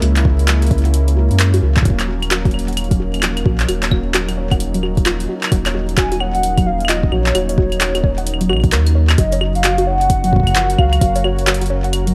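A smooth, chorused pad of detuned sawtooth chords, a dusty, warbling lo-fi pluck playing arpeggios through a filter sweep with chorus and delay, a round, up-front sine sub bass and a booming, tape-warm analog drum machine of claves, handclaps, metallic hi-hat and shaker open this playful, glitchy IDM excerpt at 131 BPM in Gb major with swung 16ths, joined almost at once by a deep electronic kick that drops out from 8.7 to 9.2 seconds, while a mellow, nostalgic vintage lead with tremolo, vibrato, analog chorus and digital delay carries the melody from 6.0 seconds as the chords move from Dbm6 and Ebm7 to Gbmaj7 at 9.2 seconds, in a lightly reverberant room.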